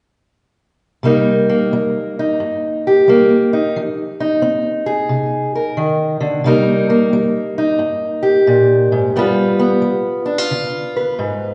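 Soulful and mournful, this swung blues fragment, cut from a longer piece, features a single fingerpicked steel-string acoustic guitar playing accompaniment from 1.0 to 11.5 seconds, moving through Cm7, Fm7, Cm7 and G7. The guitar has a dark, boxy parlour tone and sits up front. It rings into the wet reverb of a church or concert hall, and the recording's top end is rolled off.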